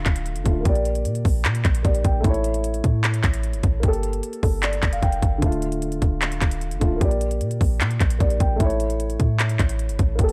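A dark concert grand piano and a clean 808-style bass open this brooding, menacing trap excerpt together, with the trap drum kit arriving at 0.1 seconds. The mellow, boxy piano sits low in the mix behind a low-pass filter, playing accompaniment that moves through Dm, Bb6, A and Gmadd9 before circling back. Beneath it, the sine-toned 808 is deep and boomy, with a fast attack that decays away. The electronic drums sit up front with a hard-clipped kick, crisp hi-hats and handclaps in a half-time feel. A digital ambience wraps the whole track in a shadowy production that runs as one unbroken section to 10.3 seconds.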